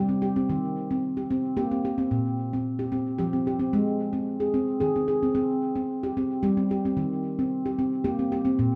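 A solo handpan carries this gentle, meditative world piece, its nitrided steel notes ringing with a mellow, fingertip-soft tone that sits up front in a boxy small room. The tempo is 111 BPM in a flowing 3/4, played with a straight feel across a range from Bb2 to Ab4. The handpan is set in a diffuse ambient delay, and a wet studio reverb gives the short passage a brief, enveloping tail. The harmony moves from Eb through Bb5, Ab and C5 before returning to Eb at 7.0 seconds. Cut from a longer piece, the 8.8-second fragment holds a calm, contemplative mood from start to finish.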